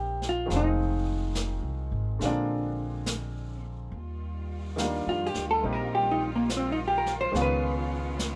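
Intimate and tender, this swung jazz ballad excerpt pairs an up-front, clean hollow-body electric guitar carrying the melody, then taking a solo from 3.9 seconds, with brilliant upright piano accompaniment, woody pizzicato upright bass, and a brushed vintage kit with a rolled-off top, while a distant, focused bowed cello section enters at 3.9 seconds with sustained vibrato chords under light reverb.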